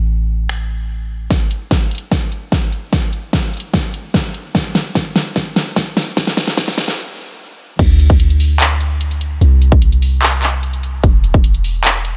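Emotional and bittersweet, this future bass passage runs at 148 BPM in 4/4 with a half-time feel, cut from a longer piece. A deep, boomy 808-style bass with a sine body, a noise layer and a fast, decaying attack opens the track, pumping against a sidechain, and a big-room dance kit enters at 0.5 seconds before the bass drops out at 1.3 seconds. From there a build-up unfolds: the kit, with crash cymbal, finger snaps, handclaps, hi-hat and a huge snare, plays a drum fill beneath a filter sweep, joined by a punchy, layered electronic kick. Everything halts in a brief stop before the drop lands at 7.8 seconds, where the mellow bass returns up front, ranging from E1 to D2. A digital ambience, shaped by a high-pass filter, surrounds the produced, forward-placed drums and bass.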